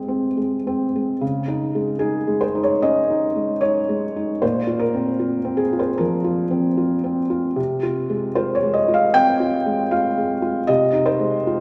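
A felt-muted upright piano plays alone, soft, mellow and up front, in this intimate, reflective neoclassical minimalist excerpt, moving with a rubato feel at a gentle pace through chords such as Ab/C, Dbsus2, Bbsus2 and Fm7/C, all bathed in the long, wet reverb of a church.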